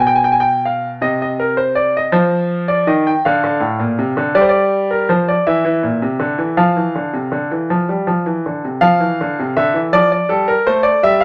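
Set up front in a moderately reverberant stone room, a clear, smooth concert grand with a deep bass and a vintage character plays a stately, elegant baroque-style two-part invention in a straight 6/8 at 54 BPM, settling into F major from 4.4 seconds and moving from its opening section into a new one at 8.8 seconds before this short excerpt of a longer piece breaks off at 11.2 seconds.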